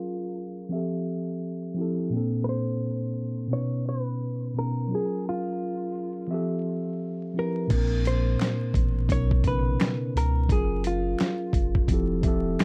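Lo-fi hip hop with a nostalgic, mellow mood and a swung 4/4 feel opens on a clean tine electric piano with cassette-tape coloring and a compressed, fingered hollow-body jazz guitar melody, both low-pass filtered under a filter sweep through the first 7.7 seconds as major-ninth chords cycle. At 7.7 seconds a round sine sub bass arrives alongside an up-front, overdriven sampler-style drum kit with a thumpy kick, snare, hi-hat and crash, and close, dry finger snaps join at 8.4 seconds. Vinyl crackle and light reverb give this cut from a longer piece a warm, dark production.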